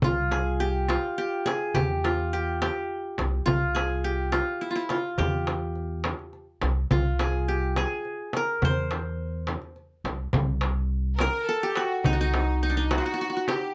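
The qanun leads this soulful, hypnotic Arabic maqam piece, its fingerpicked triple strings sounding bright-edged and up front as it carries the melody in C maqam hijaz. Set at 70 BPM in 6/8 with a straight feel, this excerpt is cut from a longer work. Beneath it, an up-front upright bass plays pizzicato on steel strings, woody and thumpy, holding a low register until 13.0 s. A metal-shell darbuka played with hard hands has a crisp, vintage, band-limited tone, joined by a small frame drum that sounds compressed and saturated. The music moves into a new section at 10.3 s, and shortly after, at 11.2 s, a clear studio violin section enters with a bowed second line, biting and intense, with light vibrato and a smooth top. Close, detailed microphones and light reverb keep the ensemble intimate and present.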